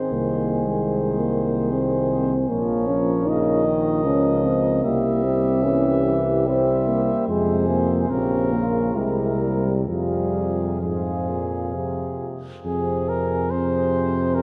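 A long, wet cathedral reverb surrounds this yearning, melancholic excerpt from a hymn-like classical brass band piece in F minor, moving in a rubato 3/4 at 63-78 BPM. A warm, present cornet carries the melody over a mellow, distant French horn section with light vibrato on the second line, while a clear, soft-attacked trombone sits in the background and a dark euphonium with light vibrato adds accompaniment. A punchy tuba enters up front at 0.1 s to anchor the bass as the harmony turns through a C7 and settles on F minor at 9.9 s.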